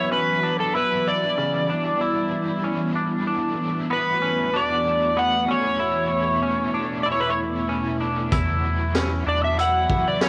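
A hazy, cassette-worn home recording steeped in a lush hall reverb opens this ethereal dream pop excerpt, moving at 95 BPM in a straight 4/4. Up front, an overdriven slide guitar carries the melody with a warm, fingered tone, its line trailed by tape echo, while a bright, double-tracked stack guitar sits low in the mix with picked overdrive, tremolo and ensemble chorus. An airy pad of detuned triangle and sawtooth voices holds sustained chords with slow attacks and long releases, and a clean, compressed electric guitar weaves fingered arpeggios through analog chorus and tape echo. The harmony drifts over a steady E in the bass register, moving from Bsus4/E through Em7, Bm7/E and Aadd9/E before returning to Bsus4/E at 8.3 seconds. At that point a glossy, pulse-width-modulated synth bass holding a single E and a gritty, boomy-kicked garage drum kit with hi-hat, high-tuned snare and tambourine join for the final two seconds.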